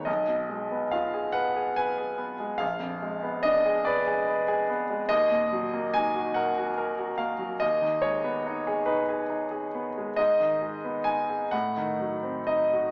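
In a slow, freely rubato 12/8 at 47 dotted-quarter beats per minute, this romantic classical nocturne for solo piano unfolds in Eb minor with a wistful, yearning mood. A single baby grand carries the whole passage from 0.0 to 12.9 seconds, ranging from Bb1 up to Ab5. Its tone is clear, intimate and natural, placed up front with long sustain and audible action noise from the instrument's mechanism. The harmony moves from Fm7b5 over Cb to Bb7b9 and settles on Ebm at 5.1 seconds, then passes through Abm before a closing Adim7. The piano sits in a wet recital hall reverb within a church or concert hall space, though the overall sound has a small-speaker character, and this short excerpt is cut from a longer piece.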